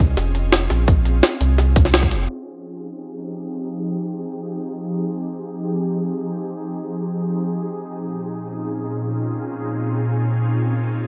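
A soulful, melancholic liquid drum and bass excerpt opens on a drop in which a tight, layered electronic kick, a gritty, pitched-up jungle-style sampled kit with a high-tuned snare and low-pass-filtered hats, and a deep sine-and-triangle sub bass with an octave all hit up front, with a band accent at 1.9 seconds, over an ethereal, detuned sawtooth pad with chorus, reverb and sidechain pumping that sustains Bbm9, Fm9 and Bbm11 chords from the very start. The drums and bass fall away by 2.3 seconds, and the pad carries on under a filter sweep, alongside a low-pass-filtered digital ambience, through 11.1 seconds.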